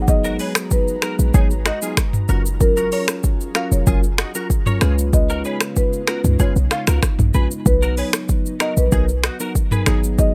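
A straight 4/4 afrobeats groove at 95 BPM is set by an electronic, overdriven afro-pop drum kit that sits up front, with a deep kick, metallic hi-hats, finger snaps, rim clicks, shaker and toms. Beneath it a short 808-style bass, punchy and tight with a fast attack and a sine body edged by a noise layer, shares that forward placement. The melody comes from a marimba played with soft mallets, its woody, round tone carrying a touch of digital delay, while a mellow tine electric piano supplies clean accompaniment through its built-in speakers. From 0.2 s to 10.0 s a bright, twangy clean electric guitar, recorded direct and compressed with a scooped tone, plays a picked riff through ensemble chorus and delay. An airy, breathy pad with a slow attack and long release holds sustained chords in the background, softened by chorus, as the harmony moves through G#m7, F#maj7, C#7 and Bmaj7 in this dry, romantic and joyful excerpt from a longer piece.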